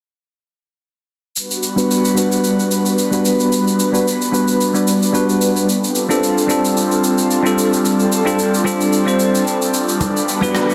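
Smooth and warm, this sunset chillout fragment drifts on a gently swung 4/4 groove. At 1.4 seconds an airy, breathy pad enters up front with slow-attack sustained chords, its detuned layers thickened by chorus and phaser. A brushed shaker and rim click sit behind the pad with a warm, rolled-off top. A bright, bell-like tine electric piano joins at 1.8 seconds, carrying the accompaniment with vintage 12-bit sampler grit, low-pass filtering, delay and a filter sweep across its whole span. The harmony moves from Gmaj7 to F69 and back to Gmaj7, and a brief touch of ringing, soft-handed congas appears at 10.0 seconds. A lush hall reverb bathes the mix, and the dense, heavily limited modern master keeps the sound full and polished.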